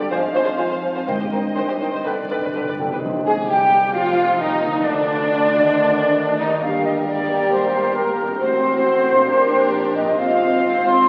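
In a rubato 4/4 moving at 120-136 BPM, this stormy, urgent fragment of a fast romantic symphonic movement in C minor places an airy, up-front flute group over lush, vibrato-laden violin sections carrying the melody and a second line, with expressive violas, a ringing thumb-plucked harp playing arpeggios, and smooth cellos and very quiet, distant double basses holding the bass. Early on, a bright solo clarinet and a mellow bassoon sit in the background, while calf-headed timpani on medium mallets play a fill at 2.1 seconds; from 3.3 seconds a dark, roomy French horn section sustains chords. The whole recording carries a wet concert hall reverb and the crackle of a very old 78 rpm record.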